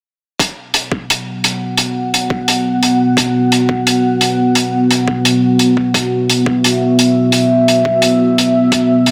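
Half-time drum and bass at 173 BPM in 4/4, with a 56% swing on the 16ths, sets a dark, tense mood in this short cut from a longer piece, built around a single B5 chord. The electronic kick and the hi-hat both enter at 0.4 seconds; the kick is a sampler-style, pitched-down, gritty thump, compressed and high-pass filtered, sitting low in the mix. The hi-hat is an acoustic, studio-room sound, mid-forward and saturated, with a rolled-off top, placed up front. At 1.2 seconds the deep ambient pad arrives with sustained chords from B3 to F#5, a moody, full-bodied blend of detuned sawtooth unison and sine with a sub octave, slow attack and long release. Chorus, its own reverb and sidechain pumping shape the pad, which is the loudest part and stays forward until 9.1 seconds. A lush hall reverb and a small room ambience surround the parts, and the master is dense and heavily limited in a modern style.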